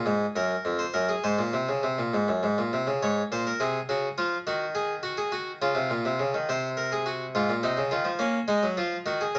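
This classical, baroque-style two-part invention for solo harpsichord moves at 69 BPM in a straight 6/8, its mood solemn yet driving, with the instrument tuned to A4 = 438 Hz and ranging from F2 to Db5. The nasal, thin, French-style harpsichord sits up front in a moderate studio reverb with a dulled top end, its harmony moving from Ab13 through Db5/Ab and Gb5/Db before settling toward Fm/Ab and Bbm7. A brief contrasting passage from 3.0 to 6.5 seconds separates two statements of the opening material in this short cut from a longer piece.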